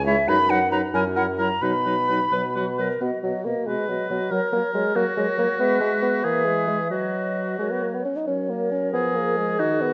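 A hollow, close-miked concert flute carries the melody with vibrato and tongued notes in this cheerful, lively classical-period movement for wind quintet, cut from a longer piece in B major and 6/8 at 85-94 BPM in dotted quarters, played with rubato. Beneath it, an up-front, dark bassoon with a smooth top holds the bass, a warm oboe with light vibrato sings a second line, a mellow, vintage French horn accompanies, and a distant, roomy clarinet sits in the background. Moderate recital hall reverb surrounds the ensemble, and the opening phrase returns at 3.0 seconds, moving through harmonies such as F# and E/G# before closing on Fmadd11 at 8.9 seconds.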